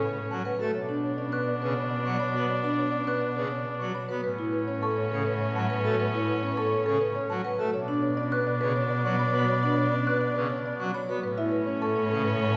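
Hypnotic and meditative, this minimalist classical excerpt in B minor moves at 103 BPM in 3/4, with a buzzing, woody marimba carrying the melody over a clear oboe second line, dark, lush violin chords in the background, a warm, up-front cello bass with vibrato and portamento, majestic full pipe organ accompaniment from 0.3 seconds, ringing vibraphone arpeggios from 0.5 seconds and delicate, bell-like celesta arpeggios from 1.3 seconds, all set in a church reverb with a faint mains hum as the harmony alternates between Aadd9 and Bm.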